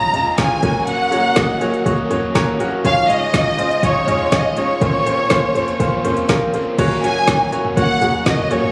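A lush, vibrato-rich violin section carries the melody from the start, with tape echo, over a bright, woody upright piano whose action noise is audible, while an overdriven, double-tracked semi-hollow guitar riff sits in the background. This anthemic, piano-driven pop excerpt moves at 122 BPM in straight 4/4 through Db, Gb and Bbmadd9, with deep house drums entering at 0.1 s: a deep kick, smooth hats and layered electronic production up front. The piano adds a fill at 2.1 s before a new section arrives at 6.8 s on Gb, all set in a club-like reverb with the roomy character of a phone recording made in the room.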